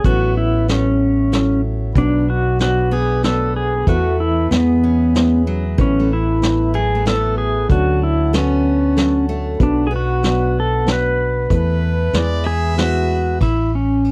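Set in a gentle three-beat lilt with a straight feel, this acoustic folk-pop ballad sounds hopeful and nostalgic, a short passage cut from a longer piece. A vintage drum kit played with brushes sits up front with a punchy kick, a medium-tuned snare and dark cymbals with a rolled-off top, beside a round, amped fretless electric bass. Over them the pedal steel guitar carries the melody, bright and twangy, played with fingerpicks and slide, its volume swells heard through a clean, compressed tone. In the background a felt-muted upright piano adds a mellow, intimate bed, a reedy, breathing pedal harmonium holds sustained chords, and a picked steel-string acoustic guitar with fresh strings plays arpeggios until 10.7 seconds. At 11.5 seconds a single distant violin floats in with a pure, bowed second line touched by slapback echo, as the chords move through Esus4 and E toward a closing A5 at 13.4 seconds. 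The mix is dry and close, in the manner of a 1970s studio recording.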